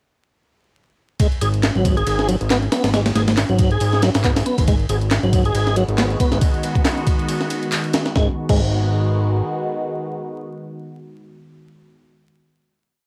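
A gritty, pitched-up sampled breakbeat with a thumpy kick and medium-tuned snare drives this raw, energetic breaks piece at 138 BPM in G# minor, with a lightly swung 16th feel and a house-style layer of closed hi-hat and handclap over the loop. A fat, saturated analog bass plays a dotted-rhythm line on G#, while a clean tonewheel organ repeats a 16-step riff through chorus vibrato, slow rotary speaker and analog delay, and the whole band hits an accent at 7.7 s near the end of the drop. A swirling, airy phased pad enters at 5.2 s with 12-bit grit and sidechain pumping, then carries a final chord until 11.6 s in a dry hardware recording dusted with vinyl crackle.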